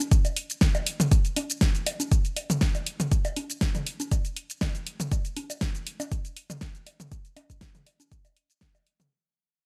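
A deep house kit of hi-hat, shaker and fat snare, with sidechain pumping on the hats, opens this expansive, emotional house excerpt alongside analog-toned electronic congas, bongos and toms that pump the same way, and a deep, layered electronic kick drum arrives up front at 0.1 s. The whole passage is a drop in straight 4/4, and it begins fading out at 1.1 s. The tape-warm drums and percussion were re-recorded in a small room and carry little reverb, so they sound close and dry.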